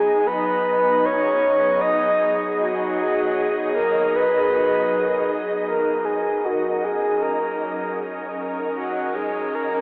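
Ambient excerpt at 78 BPM in a straight 4/4, serene and spacious, with a breathy, flute-like synth lead carrying the melody through lush chorus and diffuse delay over an ethereal, detuned pad holding sustained chords from Abm7 to Ebm7, settling in Eb minor from 5.7 s. At 6.5 s a very quiet, slightly out-of-tune celesta adds delicate bell-like arpeggios. The mix is soaked in a huge reverb yet filtered to a telephone sound, giving a dreamy cast.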